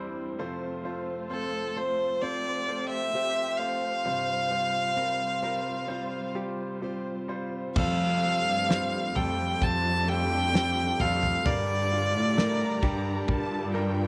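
A tender, hopeful pop ballad at 66 BPM in F major, this short cut opens with a bright concert grand piano, veiled muted strings and a dark, full-bodied fingerpicked acoustic guitar with slapback echo, while a clear, focused solo violin carries the melody from 1.3 seconds. At 7.8 seconds, as the harmony moves to Fadd9, a rich bowed cello section takes the bass and a damped 70s drum kit enters with a fat snare and tight kick. A lush violin section adds a second line with portamento near the end, all set in light studio reverb.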